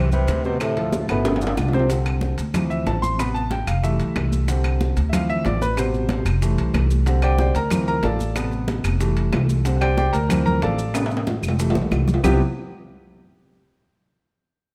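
Close, detailed microphones and light reverb give this short Afro-Cuban jazz excerpt an intimate, polished sound at a brisk 186 BPM in C major, with a sophisticated, danceable mood. It opens with a veiled, breathy cup-muted trombone carrying the melody over a tenor saxophone's scooped, vibrato-laden second line in the background, both dropping out at 1.5 seconds. A warm grand piano sits up front as accompaniment, then takes a solo from 1.9 to 12.2 seconds over cycling Csus2, Dm7, Am7 and Fmaj7 chords before settling on Cmaj7. A growly pizzicato upright bass with steel strings anchors the low end prominently. The percussion bed blends bright, softly played congas, tight high-tuned bongos kept very quiet, ringing metal-shelled timbales, woody claves and grainy, close maracas, with drum fills leading into and out of the piano solo.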